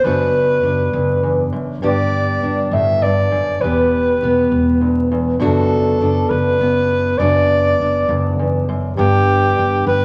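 Bathed in a wet, large studio reverb with a faint vinyl crackle, this gentle, nostalgic acoustic folk piece in 6/8 sets a mellow alto saxophone up front, carrying the melody with light vibrato, a soft attack and a smooth top, over a dark fingerpicked steel-string acoustic guitar and a woody, growly pizzicato upright bass sitting low beneath them.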